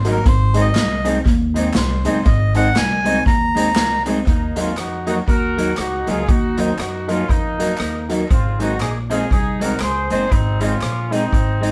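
Energetic, driving swung ska at 119 BPM in Eb dorian, cut from a longer piece, opens with a reedy, breathy melodica solo up front that gives way at 4.3 seconds to a punchy vintage horn section carrying the melody, over jangly detuned honky-tonk piano stabs, a woody, thumpy pizzicato upright bass, a twangy, slightly broken-up electric guitar with analog delay, an airy street-band drum kit with boomy kick and delay, and very quiet hollow group handclaps, all captured as a band playing live in one room.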